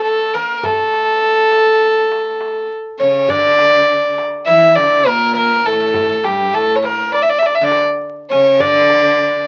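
Festive yet stately, this Turkish makam ensemble piece moves in a straight 9/8 and is cut from a longer performance. A single bowed violin carries the melody up front, its tone soft in attack, airy and pure with a floating, slightly boxy quality. A Greek bouzouki sits in the background on a second line, its picked double strings bright and metallic with some octave-doubled courses. The darbuka enters at 0.6 s, also in the background, its clay shell and natural skin giving a large, deep sound from soft hands in a live room. At 3.0 s a clear, focused cello joins as another second line, close and bowed with vibrato. The whole is heard through moderate studio ambience and the crackle of a very old 78 rpm record.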